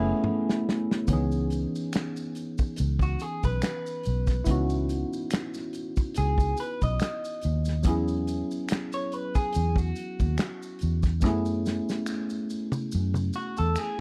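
This sultry, smooth R&B and neo-soul clip, cut from a longer piece, sits at a slow 71 BPM in 4/4 with a light sixteenth-note swing in C# minor. A worn, slightly out-of-tune tine electric piano, lightly overdriven through a combo amp and bathed in lush chorus, carries the chords up front, moving from a rootless F#m11 to C#m9, E69 and back to F#m11. Beneath it, a vintage muted fingered electric bass sounds dark, round and punchy, while a saturated, gritty soul drum kit with a tight kick, medium-tuned snare, hi-hat, toms and finger snaps plays in a tight, pumping booth with a rolled-off top. The piece opens with a drum fill and a band accent, and from 1.1 seconds distant maracas and group handclaps drift in from a large room, low in the mix. At 3.0 seconds a picked electric guitar through a small old amp adds a second line, slightly broken-up, compressed and lo-fi with slapback echo, before another drum fill arrives at 11.2 seconds. 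The overall sound is dry and close, with little reverb.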